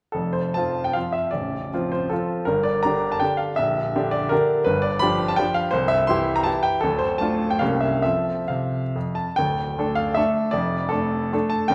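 A clear, intimate baby grand piano, up front with its action noise audible, plays this romantic classical dance alone in 3/4, a proud and rustic piece in F major with dotted rhythms and rubato that moves between 128 and 178 BPM. Its harmony passes through F, G minor, C, D minor and a C7b9 before settling on F, then turns toward D minor as a new section begins at 9.4 seconds. The piano spans a range from A0 to C6 and sits in the wet reverb of a recital hall, in an excerpt cut from a longer piece.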